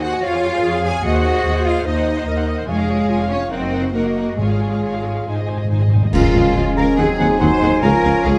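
Graceful and cheerful, this fast romantic orchestral passage, cut from a longer piece, moves with a flexible, rubato feel in 4/4. Lush bowed strings with vibrato carry the texture: a dark, woody violin section sings the melody in the background while a second, focused violin section, an airy close-miked flute and a present clarinet weave second lines around it. Rich violas supply intense accompaniment, a mellow, loose horn section holds sustained chords, and smooth, distant cellos join expressive double basses to anchor the bass. Timpani with medium mallets enter at 4.4 seconds and lead into a band accent at 6.1 seconds, where clash cymbals and concert bass drum strike and a new section opens with a roomy bassoon, a very quiet but bright trombone section, trumpet stabs and a mellow tuba. The whole ensemble sits in a moderate scoring-stage reverb that lends a natural depth.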